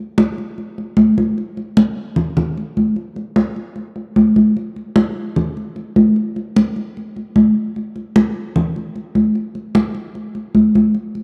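Congas carry this short latin excerpt from start to finish, entering at 0.2 seconds and playing until 11.2 seconds as the only part. Their high-tuned, thin skins give a bright, acoustic sound, placed up front as if captured live in a room. The tempo is a brisk 150 BPM in straight 4/4 time, yet the mood stays relaxed and sunny. A moderate, lush hall reverb with a 2.8-second decay surrounds the drums, while the cassette home recording lends the whole a homespun character. Cut from a longer piece, the passage holds to a single section throughout.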